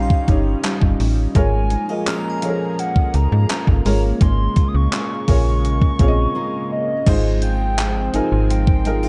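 A hollow, woody clarinet-like synth lead carries the melody from the first moment in this dreamy, smooth contemporary R&B excerpt in Ab major at 84 BPM, colored by chorus and phaser over a mellow felt-muted upright piano, a fingerpicked steel-string acoustic guitar playing arpeggios, and a lush detuned unison pad with its own chorus and phaser sitting in the background. A snappy, metallic FM bass and a thumpy gated 80s digital drum machine with crash, handclaps, hi-hat and kick sit up front, while a crystalline synth bell with chorus and digital delay glints faintly behind. After a break at 6.4 s the music moves into a new section at 7.1 s, and the dark, warm production keeps reverb to a minimum.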